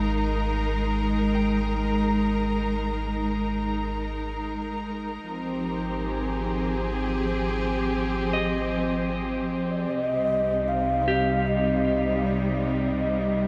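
Peaceful and warm, this ambient passage drifts at 77 BPM in a straight 3/4, set in Ab major and cut from a longer piece. A rich, bowed string section sits up front throughout, holding smooth, even chords with vibrato over a deep, round sine sub bass that fades out across the span. In the background, a clean, picked electric guitar plays arpeggios through a delay; it fades in as it sounds at the start, drops out at 3.2 seconds, and returns at 8.3 seconds. At 9.5 seconds a distant, hollow shakuhachi enters with an airy melody, its tongued chiff and vibrato trailing through its own delay. The strings carry a filter sweep as the harmony moves from Absus2 to Fmadd9/Ab and then Cmadd9, all of it bathed in a huge, wet reverb that gives the recording a vast, floating sense of space.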